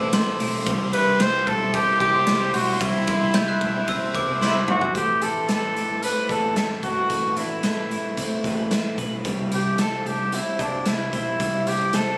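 Bittersweet and restless, this jangly indie pop excerpt sets a punchy, vibrato-rich trumpet with delay up front over a gritty, boomy garage drum kit, a twangy twelve-string electric guitar in lush chorus, a slightly broken-up, lo-fi electric guitar, and a round, foam-muted bass, while a sparkling glockenspiel and a very quiet, reedy string section drop out at 4.9 seconds during a drum fill that begins at 4.4 seconds, the whole mix carrying echo-chamber reverb, club ambience and the compressed feel of a phone recorded in the room.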